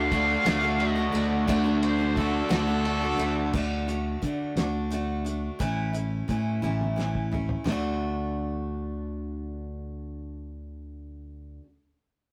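A rough rehearsal-room recording with warm saturation and a moderate stone-room reverb frames this jangly, nostalgic folk-rock and heartland-rock fragment in 6/8 at 58 BPM in D major, where a vintage harmonica with vibrato and scooped notes takes a short solo over a crunchy, double-tracked overdriven guitar riff and a very quiet, bright tonewheel organ on a slow rotary speaker until 3.5 s, while a picked steel-string acoustic guitar and a round, up-front fingered electric bass carry on to the end and a dark, cloth-damped thuddy drum kit with a fat snare plays a fill before stopping at 7.8 s.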